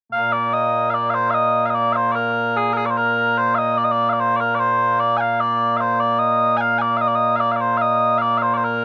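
Mellow, sweet small bagpipes play alone and up front from 0.1 to 8.8 seconds, their continuous vibrato-tinged tone carrying a proud, ceremonial Scottish pipe tune in B-flat major at a stately 74 BPM in a straight 2/4, heard dry and open as if played outdoors in this short cut from a longer piece.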